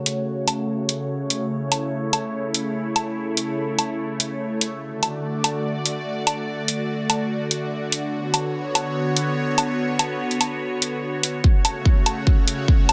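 Lightly reverberant and digitally ambient, this heavy, menacing half-time wobble dubstep excerpt sets a lush, detuned supersaw pad, phased, sidechain-pumped and filter-swept, holding sustained chords over up-front layered electronic hi-hat and woodblock, before a punchy electronic kick drum arrives at 11.4 seconds to drive a closing build-up.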